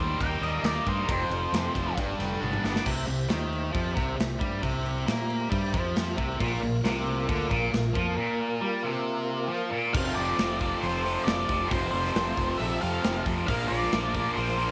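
Classic rock at 136 BPM in a straight 4/4, confident and driving, with a tight, bright distorted guitar riff up front alongside a growling, punchy fingered bass and a big rock drum kit whose bright cymbals and punchy kick ring through a big room, all set in moderate plate reverb. An octave-fuzz lead guitar with tape echo solos from the start until 1.9 seconds, a drum fill closes that opening at 2.9 seconds, and a phased overdriven guitar riff drops out in the middle before rejoining at 6.4 seconds. The lead guitar returns at 9.9 seconds over chords moving from F to Bb, while a fat tonewheel organ with key click and slow rotary speaker holds sustained chords in the background throughout this excerpt of a longer piece.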